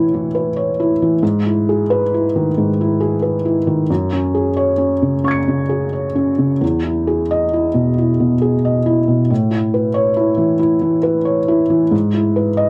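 A felt-muted upright piano plays alone, soft and mellow with audible action noise, up front in light reverb, through a tender, intimate fragment of neoclassical minimalist piano in E major at a rubato 90 BPM in 4/4, its chords moving from Aadd9 through Emaj7/G#, F#sus2 and Emaj7 before returning to Aadd9 and Emaj7/G# by 11.9 seconds.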